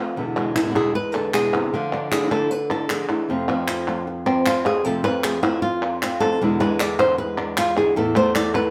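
Fiery and intense, this short flamenco fragment drives along at 154 BPM in a straight 4/4, set in E phrygian dominant with tuning slightly below standard pitch. A bright, fingerpicked flamenco guitar sits up front carrying the melody across the full 8.7 seconds, its finger squeaks audible as it ranges from low E2 up to D5. Beneath it, a second fingerpicked acoustic guitar in a warm tone supplies chordal stabs, moving through E7, Dmadd9 and F before returning to E7 and settling on Esus4. Crisp palmas hand claps join at 0.4 seconds, sounding live in the room. The whole performance is framed by a moderate stone-room reverb with a decay of about one second.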